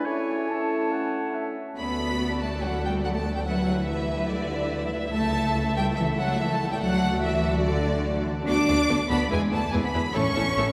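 A quick classical-period orchestral movement in D major, graceful and lively, moving at 143 BPM in a straight 4/4. It opens with a brief woodwind and brass passage: a clear, present solo oboe and an airy flute group with crisp attacks carry upper lines, a very quiet solo clarinet adds a further line, and a mellow, punchy bassoon sits in the background. Beneath them, a warm French horn section holds sustained chords. At 1.8 seconds the strings take over, with a rich, focused violin section singing the melody up front with vibrato while a second violin line moves beneath it. A smooth, even viola section fills the accompaniment, and a lush cello section joins an expressive, close double bass section to anchor the bass, with the strings carrying on until about 10.7 seconds. Everything sits in a wet cathedral reverb that gives the excerpt a long, resonant hall tail, as the harmony moves from D through Em7/D and Bm7/D before closing on E and A.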